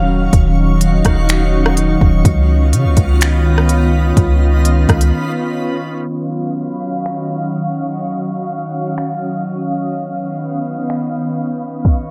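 A glassy, chorus-bathed FM pad holds sustained Ebm9 and Db9 chords across this hazy, ethereal cloud-rap excerpt at 125 BPM in a half-time feel, joined by a deep, sine-like 808-style bass that drops out at 5.1 s for a brief break, a smooth overdriven R&B kit of soft kick, crisp hats, finger snaps and rim clicks, and a faint reversed, granular texture swelling high above in a dreamy, low-passed mix soaked in plate reverb.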